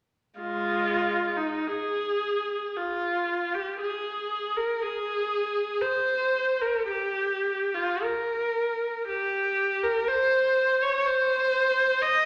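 Set in a recital hall's lingering reverb, this serene, nostalgic classical fragment from a longer piece features a single unaccompanied viola, bowed up front with a rich tone, vibrato, soft attacks and sliding portamento, phrasing expressively in a rubato 3/4 from 0.4 to 12.3 seconds.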